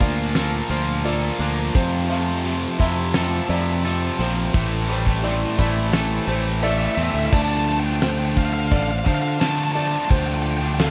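A straight 4/4 pulse from a loose indie drum kit with a fat snare and tight kick drives this cathartic, cinematic post-rock excerpt, where a round, punchy fingered bass sits up front beneath two bright distorted guitar riffs, a twangy clean guitar and a felt-muted piano arpeggiating with slapback echo, and a very quiet, floating string section sustaining chords from Bbmaj7/D through Am7, building up until the twangy guitar and one riff drop out at 7.3 seconds as the harmony moves to Dm7, shortly after a bluesy overdriven lead guitar melody enters at 6.6 seconds over Am7, all in light reverb.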